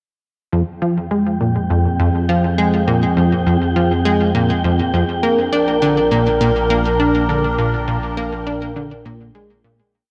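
Hypnotic and cosmic, this short piece of ambient, sequencer-driven space music at 102 BPM in F dorian sets a punchy, funky analog bass sequence looping in five steps that drift against the bar up front, beneath a detuned, warbling resonant pad that fades in from 0.5 seconds and out from 6.8 seconds over Fm moving to Bb, a low pulse-width-modulated analog drone holding the root, and a breathy, wind-like tuned noise texture on a high G, all bathed in an echo-heavy chamber reverb.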